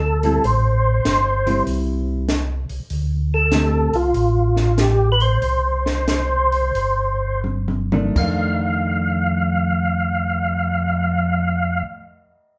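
Greasy and swinging, this soul jazz organ trio excerpt in F mixolydian moves at 82-97 BPM with a swung feel: a percussive tonewheel organ with third-harmonic percussion carries the melody over a round, key-clicking organ bass line, both up front through chorus vibrato and a slow rotary speaker, while a clean, compressed hollow-body jazz guitar sits lower in the mix as accompaniment in two stretches, and a compact cocktail drum kit with dark cymbals, a high-tuned snare and a punchy kick plays until 10.9 s, the band slowing from 2.9 s and the drums adding a fill at 7.4 s that leads into the closing F6 section, all in a moderate studio reverb.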